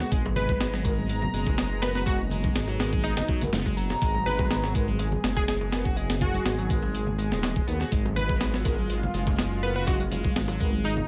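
Breakbeat in a gritty, raw vein, this short cut from a longer piece rides a straight 4/4 groove over a single G#m9 chord. A compressed, sampler-style breakbeat kit sits up front with a thumpy kick, a high-tuned snare, hi-hat and a touch of studio reverb, while bright, hard-handed bongos and congas tick along in the background. Underneath, a dark detuned saw bass rumbles and beats with tube saturation, deep and sustained. An overdriven synth lead plays a screaming, guitar-like riff through phaser and tape echo. A plucky unison lead enters at 0.4 seconds with a catchy melody filtered to an AM radio tone, and a mellow brass section adds tight, classical-style stabs from 0.8 seconds. A lush, chorused pad holds sustained chords behind it all with sidechain pumping, and the overall sound is dry.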